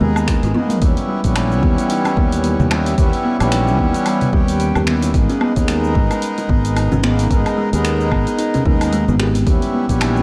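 Dark, warm production sits in a moderate scoring-stage reverb on this earthy, hypnotic organic downtempo excerpt at 111 BPM in 4/4, swinging on the 16ths and moving between G#madd9 and D#7b9b13. An up-front, reedy, breathing harmonium pumps with sidechain and tape echo over a growly, punchy fretless electric bass with tube saturation and subtle chorus, while a woody, buzzing kalimba plays filtered, echoing arpeggios. A barely audible detuned sawtooth pad sounds only until 0.8 s. A deep house kit of dark hats, finger snaps, shaker, toms and woodblock enters at 0.2 s, joined at 0.3 s by a punchy electronic kick and a drum fill running to 0.8 s, with very quiet, bright congas and bongos underneath.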